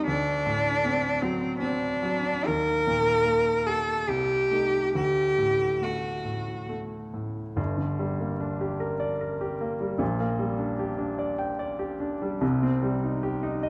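In a rubato three-four, this serene romantic classical duo, cut from a longer piece, sets a rich, smooth, even cello melody, bowed by one player with vibrato and placed up front, over a warm, natural baby grand piano accompaniment, the cello singing until 6.7 seconds before the piano continues alone to 13.7 seconds, heard through a moderate recital-hall reverb in a dark, warm production.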